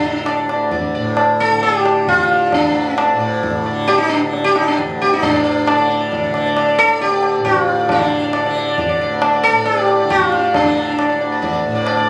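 This Hindustani classical passage, cut from a longer piece, moves in a solemn, longing 3/4 at 134 BPM and gradually speeds up, with a change of section at 5.2 seconds. Up front, a round, plectrum-plucked sitar carries the melody with buzzing tone and shimmering sympathetic strings, over a bright, softly plucked tanpura drone. A high-tuned, ringing tabla with a compressed, saturated edge joins at 0.3 seconds, all heard through moderate recital-hall reverb on a phone recording made in the room.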